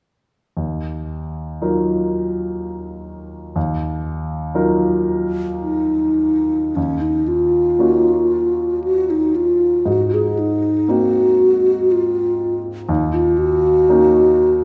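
A slow, rubato 3/4 drifts between 49 and 64 BPM in this hazy, mysterious impressionist classical duo, set in Eb minor with A4 tuned to 441 Hz. A grand piano of smooth, vintage warmth opens alone at 0.6 seconds, playing accompaniment from Eb2 to Bb4 over an Ebmadd9 chord, up front though softer than its partner. At 5.6 seconds the wooden-headed alto flute enters with the melody between Db4 and Ab4, its airy, hollow, mellow tone tongued with vibrato and placed close. A new section arrives at 6.8 seconds, moving through Ebm9, Abadd9 and Ebm7 as both instruments carry on to the end of this passage, which is cut from a longer piece. A wet concert hall reverb with a 1.9-second decay surrounds the pair.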